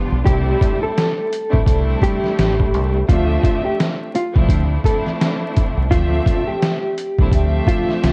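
A worn, warbling cassette sound with vinyl crackle and little reverb frames this gritty, tough boom-bap hip-hop excerpt, where a bright, lush bowed string section opens at 0.0 s, a deep, round fingered electric bass enters at 0.1 s, and at 0.3 s a dark, clean electric guitar melody with tremolo and tape echo arrives alongside an up-front, pitched-down sampler-style drum kit with a thumpy kick and swung hi-hats over chords moving from C69 to Dm9.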